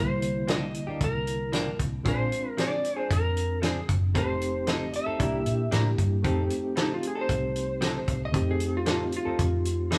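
Captured as a band playing live in a stone room with moderate reverb, this swaggering, soulful straight-eighth soul blues at 115 BPM in F mixolydian sets a dark, slightly broken-up, compressed slide guitar up front over a reedy, bright electric piano with light overdrive and fast tremolo, a round, foam-muted fingered bass, a mid-forward soul drum kit with a fat snare and tight kick entering at 0.2 s, and clean, direct-recorded picked guitar stabs from 0.5 s, with the slide guitar taking a solo from 6.2 s as the chords move through C9, Bb9 and F9.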